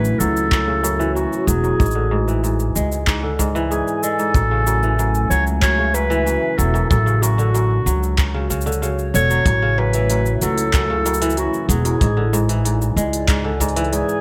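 A woody, growly upright bass sits up front in this pastoral, delicate folktronica excerpt, its pizzicato notes thumpy and steel-strung as it holds down the low end at 94 BPM in a straight 4/4. A fingerpicked kora ripples through crisp, ringing arpeggios, softened by a low-pass filter and carried on delay with a touch of vintage 12-bit sampler grit. Above it, a dark, distant clarinet sings a solo melody in classical style between F#4 and C#5, its roomy tone echoed by delay and roughened by the same sampler grit. A warbling, detuned tape-like pad in the background lays down mellow, nostalgic lo-fi chords with a slow attack and long release, its chorus and built-in reverb cycling through A6, E7/A, F#m7/A and Dmaj7/A over a steady A in the bass register of the harmony. The rhythm comes from a minimal electronic kit of clicky hats, handclaps and shaker, joined at 0.5 s by a dry, punchy acoustic kick, both set in studio reverb, while light reverb and small room ambience frame the whole A major passage.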